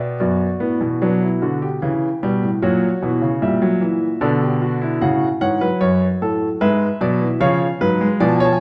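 Serious and contemplative, this short passage cut from a longer piece is a baroque-style four-part fugue in B minor for solo grand piano, moving at 75 BPM in a straight 3/4 and tuned slightly low, with A4 at 437 Hz. The polished, present piano sits up front, spanning F#2 to A5, as the harmony passes from Bm/F# through diminished and dominant-seventh chords to close on C#7. A wet recital hall reverb with a 1.3-second decay surrounds the instrument throughout the 8.6 seconds.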